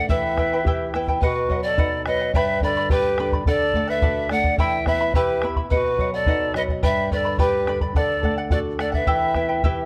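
Melancholic and earthy, this Andean folk piece in E minor moves at a straight 107 BPM in 2/4, with an airy, up-front pan flute carrying the tongued, vibrato-laden melody over a distant, reedy quena second line, fingerpicked charango shimmering on double strings, a dark, thumb-plucked flamenco guitar, and a round, close bombo, all set in a moderate concert hall reverb and captured by close, detailed microphones.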